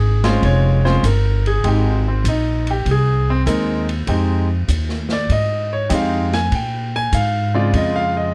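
Piano and upright bass begin together at 0.0 s in this moody, swinging jazz piano trio passage, cut from a longer piece, in F minor at 98 BPM in 4/4 with swung eighths. The clear grand piano takes the melody as a solo throughout, sitting up front with an intimate, natural tone and audible action noise. The pizzicato upright bass is also close and is the loudest part, with a woody, thumpy sound from its steel strings. The acoustic drum kit enters at 0.2 s in a small room, smooth and rolled-off on top, with dark cymbals, a medium-tuned snare and a boomy kick across hi-hat, ride, snare and kick. The harmony moves from Bbm7 to Fm7 at 1.6 s and returns to Bbm7 at 6.5 s, set in light reverb within a warm production.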